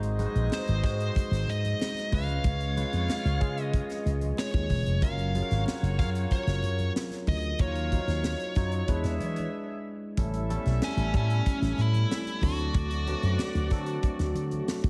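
Lightly reverberant and polished, this slick, nocturnal slice of 1980s jazz-funk pop moves at 93 BPM in a straight 4/4, with a punchy, growly slap bass pushed up front through an envelope filter and a tight funk kit with a high-tuned snare driving it. A barky tine electric piano, lightly overdriven with a subtle chorus, comps through changes from Ab7 to Gbmaj7 and Ebm9, while a nasal lead guitar with a parked wah, overdrive and analog delay carries the melody from 0.5 seconds. A distant, roomy horn section with vibrato adds a clear second line and very quiet, dry congas sit underneath, before a brief break at 9.5 seconds leads into a repeat of the theme over A7 and D7.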